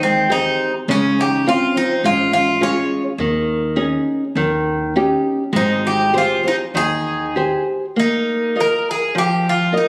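In a rubato 4/4 at 102 BPM, this nostalgic, tender fado-style ballad in Ab major, cut from a longer piece, sets a metallic, double-strung Greek bouzouki melody up front beside a dark flamenco guitar with old strings, while a shimmering, octave-doubled fingerpicked twelve-string acoustic guitar with slapback echo adds a second line until 7.6 s and a woody pizzicato upright bass holds the low end until 7.5 s, before the harmony shifts to Bbsus4 at 8.0 s, all heard in a moderate recital hall reverb with the compressed sound of a phone recording.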